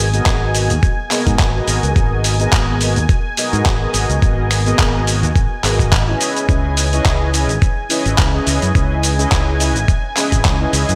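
A swung 106 BPM nu-disco groove in G# minor sets a cosmic, sensual mood, driven by a gritty, thumpy overdriven kick and an up-front dusty soul drum kit of cabasa, finger snaps, handclaps and hi-hat, both compressed and re-recorded in a small room, under a punchy, bright fingered electric bass. Mellow, round synth brass with chorus, delay and sidechain pumping carries the accompaniment over a lush, warbling unison pad holding sustained chords, moving from G#m7 to C#m7 at 6.2 seconds. The bright 1980s-style digital production sits in a moderate hall reverb, and the excerpt is cut from a longer piece.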